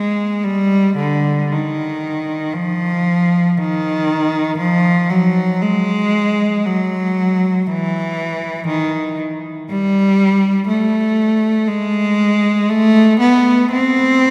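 The rhythm moves freely in a rubato feel over a slow four-beat pulse, so phrases stretch and settle in an expressive, flexible way. This is a classical excerpt for unaccompanied cello, played by a single bowed instrument that carries the whole 14.3-second passage alone. Its tone is rich and smooth, with an even, singing vibrato that gives the low-to-middle register a yearning, mournful voice. The cello sits close and up front, yet it is wrapped in the long, wet reverb of a church, whose lingering tail lends the lines a spacious, sorrowful halo. Cut from a longer piece, the fragment feels like a single unfolding thought of lament.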